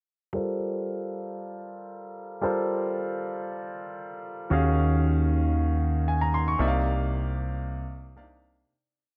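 A clear, intimate concert grand piano opens this deep, hypnotic amapiano breakdown in G minor at 115 BPM, its rhythmic, spread-voiced chords with grace notes, short fills and audible action noise passing through a low-pass filter sweep over Gm11, Ebm11 and Cm11, while a fat, detuned sawtooth analog bass enters up front at 4.5 seconds with sustained notes before the dark, lightly reverberant piece fades out from 6.6 seconds.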